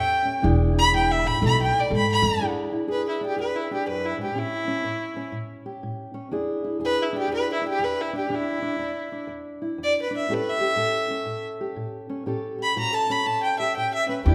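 A dark, lightly vibrato-tinged bowed fiddle leads this rollicking, soulful acoustic country blues excerpt at 122 BPM with a swung 4/4 feel, carrying the melody up front over a woody, fingerpicked steel-string guitar with old strings moving through E7, B7 and A7, while a growly pizzicato upright bass plays from 0.4 to 2.4 seconds and returns at 14.3 seconds, all set in the lingering reverb of a recital hall.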